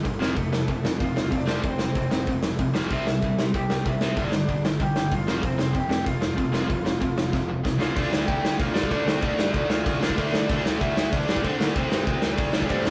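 A rough rehearsal-room recording in a moderate stone room, this rebellious, upbeat punk rock excerpt at 190 BPM in straight 4/4 drives an up-front, double-tracked overdriven guitar riff over a growly, punchy picked bass in the background and a big acoustic kit with bright cymbals, a medium-tuned snare and a punchy kick, while a lo-fi lead guitar through a small cranked amp carries the melody from 0.4 seconds, moving through F, C, G5 and F5 before a drum fill at 7.3 seconds lands the band on D minor at 8.0 seconds.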